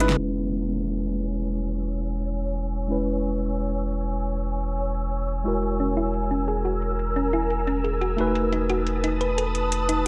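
A drum fill opens this dreamy, uplifting liquid drum and bass excerpt, with a pop kit of fat snare and metallic hi-hats in a small room over a thick, saturated sub bass sitting up front. A worn, slightly out-of-tune tine electric piano moves through a filter sweep and dub echo beneath an airy, ethereal pad washed in ensemble chorus and phaser, while a faint electronic downlifter passes in the background from 0.3 to 2.9 seconds. A round, thumb-piano-like pluck with chorus and delay flickers at the very start and returns at 5.8 seconds to spin gentle arpeggios over the chords.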